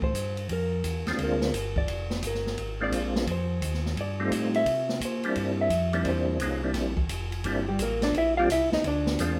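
Greasy and bluesy, this short swinging soul jazz organ trio cut rides dominant chords from Bb7 through F7 and C7, with a dark, clean hollow-body electric guitar soloing from the start and a mellow tonewheel organ holding down the bass line through chorus vibrato and a slow rotary speaker. At 1.1 seconds a round, percussive tonewheel organ melody with third harmonic percussion enters up front, also spun through slow rotary and chorus vibrato. An acoustic kit with dark cymbals, a medium-tuned snare and a boomy kick keeps time on hi-hat and ride in a natural studio room with moderate reverb.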